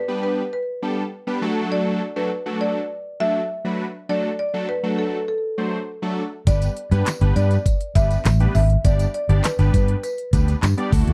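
A woody marimba played with medium mallets carries the melody from the opening, its rosewood tone given a slapback echo and sitting forward in the mix. This summery, upbeat dance-pop cut moves at 101 BPM in a straight 4/4 in G major, shifting from G to D early on. Beneath it, a big, bold polysynth with a nasal, detuned sawtooth edge and a moving notch holds sustained chords that pump against the sidechain. At 6.5 seconds the rest of the band drops in: a punchy, round fingered electric bass, also pumping, and an up-front electronic pop kit of knocking kick, fat snare, crisp hi-hat and handclaps with a tape-tinged sheen. A jingly tambourine sits faintly in the background. The sound is dry and close, in the manner of a 1970s studio, and the clip is cut from a longer piece.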